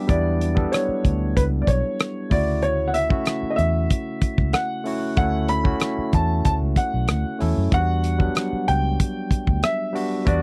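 A grand piano carries the melody high in its register from the very start, joined at once by a barky, lightly overdriven tine electric piano playing accompaniment through a combo amp. Within the first second, a dark, round, foam-muted fingered electric bass and a damped 1970s drum kit enter, the kit sitting up front with a tight kick, rim clicks, hi-hat and a rolled-off top. This is a lush, smooth 1970s-style soul passage with a cinematic mood and a straight four-beat feel. The harmony moves from Em9 to Dmaj9 at 2.3 seconds and back to Em9 at 7.7 seconds, which gives the short section an unhurried, suspended quality. The natural, warm piano and the punchy, amped bass come through a dry, close studio sound with little reverb, as in a brief cut from a longer piece.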